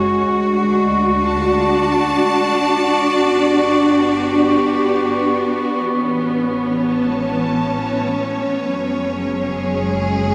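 Drenched in a huge, cassette-tinged reverb, this peaceful ambient excerpt in 3/4 is led by a lush, up-front bowed string section holding smooth sustained chords that pass through a filter sweep from 5.9 seconds, while in the background a ringing stainless-steel handpan fades in with bright, tape-echoed arpeggios, a dark, expressive double bass section fades out beneath, and an airy glass harmonica adds a pure, ethereal tone until 5.9 seconds.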